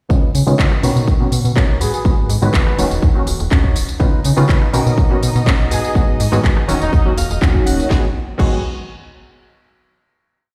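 Nostalgic and sensual, this short filtered disco house piece rides a four-on-the-floor groove, with a punchy, up-front electronic kick and a programmed house kit of cracking snare, crisp hats, claps, rim, tambourine and crash, while a snappy, metallic FM bass jumps octaves beneath a funky, detuned polysynth comping in dotted-rhythm chords through chorus and phaser. A clean, direct-recorded electric guitar plays a funk chord riff in the background and adds a fill from 6.4 seconds, a bright, distant horn section slips in short phrases with delay, and a biting studio violin section holds sustained chords in the background. The pitched parts pump against the kick and sit under a low-pass filter sweep until a final chord at 7.9 seconds, all heard as if played on a big sound system in a bare stone room.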